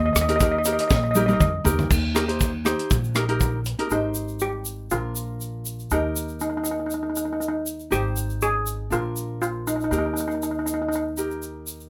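Shimmering, metallic steel pan struck with hard rubber sticks carries the melody over woody, thumpy pizzicato upright bass from the first moment of this bouncy, sunny 120 BPM calypso in Eb major, joined at once by a grainy, compressed egg shaker, lightly fingerpicked ukulele and a tight, dark funk drum kit with a high-tuned snare that plays a fill at 0.9 seconds and drops out at 3.9 seconds, leaving the dry, close-sounding band to cycle through Abmaj7, Bb and Eb.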